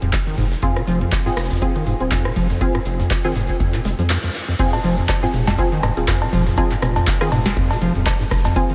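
Swung sixteenths drive this acid house cut at 121 BPM in 4/4, sitting in F minor on a single Fm chord, with a gritty, driving mood. An overdriven electronic kick thumps deep under a booming analog drum machine whose crisp snare, metallic hats, handclaps, rim clicks, cowbell, cabasa and toms carry their own overdrive, while a cloth-damped acoustic kit adds a very quiet, fat snare and hi-hat from a small room. A squelchy, resonant square-wave acid bass plucks its riff through overdrive, lush chorus, cassette-tape wear and tape echo, pumping with the sidechain. Below it, a round analog bass built from square and sine waves with wave-folding holds sustained low notes that also duck with the sidechain. From 0.6 seconds a filtered dub chord stab joins with muted, warbling, detuned sawtooth hits coloured by ensemble chorus, 12-bit sampler grit and tape echo. After a band accent at 4.1 seconds, the drop lands at 4.6 seconds, and the whole dreamy mix floats in a huge ambient reverb as this fragment of a longer piece runs on.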